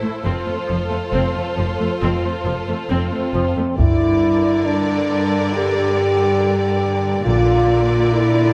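A French horn section sits up front from 2.9 seconds, holding warm, roomy sustained chords with light vibrato in this dark, epic cinematic orchestral cue, cut from a longer piece in a straight 4/4. Before the horns arrive, a lush string body carries the build-up: expressive second violins with a soft attack, an intense viola accompaniment, smooth, even cellos and distant double basses bowing beneath. At 3.8 seconds a clear violin section takes the melody on D5, while solo taiko drums strike with heavy sticks, close and dry, until 5.5 seconds. The harmony moves from F to G minor and then to B-flat. A moderate concert hall reverb gives the orchestra a grand, spacious depth.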